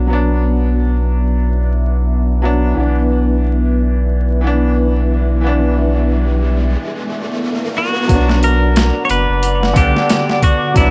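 Smoky and cinematic, this trip hop excerpt moves at 90 BPM in B minor with a swung sixteenth feel and a prominent bed of vinyl crackle over a dry overall sound. A bright, woody upright piano carries the accompaniment from the start, its long sustain shimmering through harmonic tremolo and tape echo, while a dark, detuned sawtooth pad holds sustained chords behind it, thickened by chorus and its own reverb. A round sine sub bass sits up front underneath, deep and steady, as the harmony shifts from Bm to Bmadd11 at 2.8 seconds. An electronic riser builds from 5.0 seconds into a brief break, and a clean, twangy electric guitar picks out a compressed melody with tape echo from 7.8 seconds. At 8.1 seconds a gritty, pitched-down boom bap kit lands up front, with a thumpy kick, high-tuned snare and hi-hat, overdriven and set in a small room, as the chords return to Bm.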